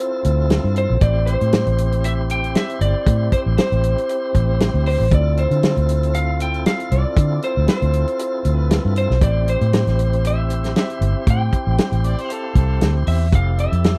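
This mournful, brooding soul blues has a dry, close sound in the manner of a 1970s studio, and it is cut from a longer piece. A dark, slightly broken-up electric slide guitar, played with fingerpicks and compressed, carries the melody in a fairly high register from the start. Beneath it, a full tonewheel organ with light overdrive and a fast rotary speaker fills in the accompaniment. A foam-muted, round and punchy fingered electric bass and an up-front acoustic drum kit, with a tight kick, medium-tuned snare, hi-hat and a rolled-off top, drive the straight-eighth groove with a slight swing. The harmony moves mostly between Dm7 and Am7 before settling on Fmaj7. Near the end, from 12.1 to 12.9 seconds, a mellow, softly attacked harmonica with light vibrato and a touch of overdrive adds a brief second line.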